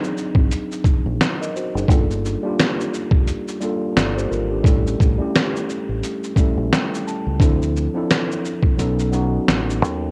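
A gritty, pitched-down trip hop drum kit leads this melancholic, reflective lo-fi hip hop excerpt, its thumpy kick, medium-tuned snare, hi-hat and shaker sounding compressed and sampler-style, as if re-recorded in a large room, and sitting up front. The tempo is 87 BPM in 4/4, with a swung sixteenth-note feel. A mellow tine electric piano, worn and slightly out of tune, carries the accompaniment through cassette tape saturation and a low-pass filter, moving through jazzy seventh chords from G#7#11 to Gm7, A7, Dm7 and B7, and it plays a short fill from 6.0 to 7.4 seconds. A dark, round fingered electric bass in a deep dub style enters at 0.4 seconds, sounding direct and amped. Light reverb and the hazy character of a home cassette recording give the reflective mood a nostalgic, intimate quality.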